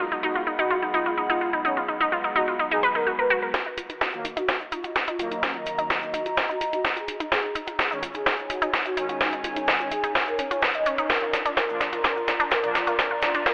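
Washed in a lush hall reverb with a narrow, telephone-like tone, this dark, dramatic melodic techno passage in Eb minor moves at 127 BPM, opening on a sawtooth pluck in detuned unison with punchy, wave-folded arpeggios up front, a smooth, vibrato-tinged synth lead, bold, brassy stabs and a warbling, nostalgic lo-fi pad. A very quiet, resonant drone with moving overtones drops out at 3.6 seconds, just after a punchy electronic kick, a house kit with a cracking snare and hi-hat, and a faint, grainy cabasa enter at 3.5 seconds. What follows is a build-up with a drum fill and filter sweeps on the arpeggio and lead, the synths pumping against the kick over chords that pass from Ebm through Dbsus2 to Bb.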